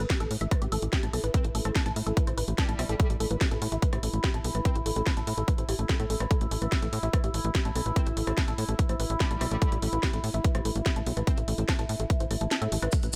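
Intense and psychedelic, this 145 BPM psychedelic trance excerpt in A minor runs in a straight 4/4, cut from a longer piece. A punchy, tape-tinged electronic kick sits up front with a drum kit of cracking snare, bright hats and rim clicks, while a tight, driving sequencer bass with sawtooth bite and tube saturation pushes underneath. A woody, wave-folded pluck carries the riff from the opening, its mellow, percussive tone roughened by 12-bit sampler grit, chorus, digital delay and sidechain pumping. From 0.7 seconds a resonant drone with moving overtones holds sustained chords, bathed in chorus and reverb and pumping against the kick. In the background a metallic, wobbling FM bass adds a second line in two stretches, its aggressive edge thinned by a high-pass filter and trailed by delay. The kick drops out at 12.5 seconds, and grainy, mellow maracas appear just at the close, all in a dry, close-sounding mix.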